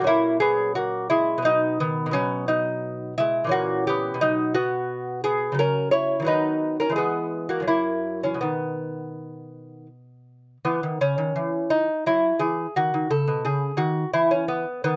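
A solo lute with mellow, delicate gut and double strings, some doubled at the octave, is fingerpicked up front under close, detailed microphones and light reverb in this serene, dance-like baroque-style classical excerpt in B major and 3/4 at 86 BPM, played with rubato across a range from F#2 to C#5 and moving through chords such as A#dim7, F#7/C# and C#m9 before coming to rest at 14.2 seconds.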